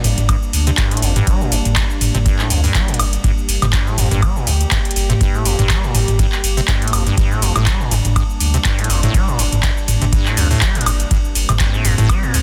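Raw and trippy, this acid house excerpt rides a lightly swung sixteenth feel, driven by a booming, overdriven analog drum machine up front with metallic hats, handclaps, ride cymbal, shaker, toms and woodblock, joined at 0.3 s by a deep, distorted electronic kick. A squelchy, hollow square-wave acid bass riff with a resonant filter sweep runs through lush chorus, cassette tape coloring and digital delay, while a thick, saturated triangle sub bass pumps beneath it. Behind them, a warbling, nostalgic lo-fi pad of detuned sawtooth and triangle tones holds mellow sustained chords with chorus, phaser and its own reverb, pumping under sidechain, set in digital ambience and a dense, heavily limited modern master.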